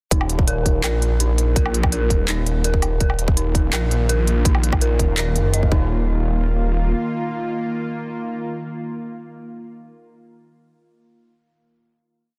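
A spacious, tense half-time drum and bass piece opens straight into its drop. An eerie, warbling FM synth bell repeats a six-step loop that drifts against the bar, over a thick, swirling phased saw bass gliding through long notes up front, a tight layered kick, and a sparse, overdriven kit of crisp hats, handclaps and woodblock. At 3.9 seconds a bright, string-like drone with vibrato and reverb enters with pumping sustained chords, carrying on through the final hit at 5.9 seconds and outlasting the other parts until 9.6 seconds, all within a digital ambience and a dense, heavily limited master.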